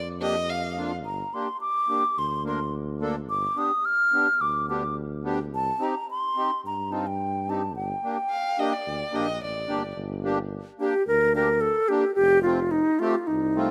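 A straight 4/4 pulse at 108 BPM carries this soulful, bittersweet klezmer excerpt in G minor, moving through Gm, G7 and Cm over a breathy tuba bass with scooped notes and a reedy, sweet accordion with light tremolo tuning. A hollow, pure silver concert flute sings the melody up front from 1.1 s, close-miked with tongued notes and vibrato, while a dark, boxy bowed violin adds brief, expressive portamento lines at the start and again at 8.3 s. The sound is a rough home demo with a light touch of small-room reverb.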